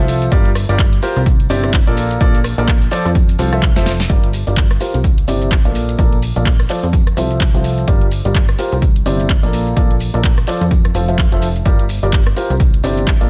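A swung 16th-note groove in four drives this bittersweet, energetic piano house passage, where an up-front punchy electronic kick, an analog drum machine's handclaps, hi-hat, rim click, shaker and snare, and a distant tambourine in the background carry the beat beneath a clear concert grand piano riff with long sustain, low-pass filtering, dub echo and sidechain pumping, while a plucky, funky, wave-folded analog bass pumps along on a cycle of Gm7, Cadd9, Bbmaj7 and Fmaj7, all set in digital ambience, with a drum fill at 3.7 seconds closing the opening drop.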